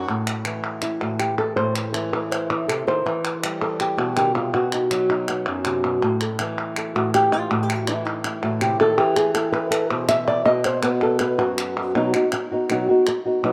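Flamenco at 162 BPM in 4/4 with a straight feel, passionate and mournful in mood, cut from a longer piece. A dark, boxy flamenco guitar carries the melody up front, thumb-plucked with audible finger squeak, ranging from F#2 to E5 and soloing from 0.1 to 11.9 seconds. Palmas hand claps enter at 0.1 seconds, crisp and band-limited with a vintage character, set lower in the mix behind the guitar. The harmony moves from Am through Em and B, then shifts to bare A5, E5 and B5 chords before landing on B at 11.9 seconds, where a short closing section begins. A wet plate reverb with a long tail surrounds the parts, and the whole has the rough feel of a home demo.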